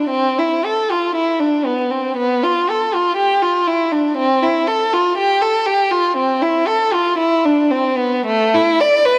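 This is a classical, baroque-style suite movement for unaccompanied violin, taken from a longer piece and lasting just over nine seconds. A single bowed violin plays alone from 0.0 to 9.2 s, moving with a flowing, introspective rubato in 4/4 and tuned slightly high, with A4 at 444 Hz. The player sits up front with a warm, expressive tone, a smooth top end, vibrato and gliding portamento between notes, ranging from A3 up to D5. A moderate concert-hall reverb, about 1.9 seconds long, surrounds the instrument. The production leans dark, and a vinyl crackle adds an aged patina beneath the solo line.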